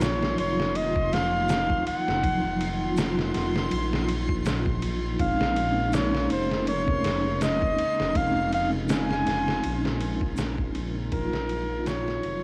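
A bucket-muted trumpet leads this brooding, cinematic trip hop fragment. Its veiled, scooped notes sit up front, coloured with vintage sampler grit and dub echo, over a soft-mallet vibraphone that rings with motor vibrato, tremolo and tape echo in a boxy little room. Beneath them, a dark, detuned sawtooth bass rumbles and beats, while a compressed, pitched-down sampler drum kit plays kick, snare and ride with a lazy swung feel, re-recorded in a large room. A bright, dry tube shaker stays in the background until 12.0 seconds, and a reversed, granular texture swells high and dreamy further back, as a very quiet, warbling pad enters at 0.1 seconds with nostalgic, lo-fi chords moving from Ebmadd9 to Bbm11 and back. The home-cassette sound carries light reverb and vinyl crackle, and the piece fades out from 9.1 seconds.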